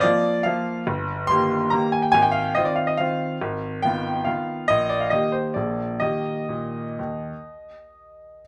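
A classical piano waltz in Eb major, elegant and graceful, moves in a rubato 3/4 between 122 and 148 BPM across this 8.5-second fragment cut from a longer piece. A bright baby grand piano plays solo from G1 to C6, brilliant and natural with long sustain, sitting up front in a moderate large studio reverb with a faint mains hum beneath. The harmony passes from Bb through Fm7b5/Ab and Bb7 to settle on Eb at 6.0 seconds.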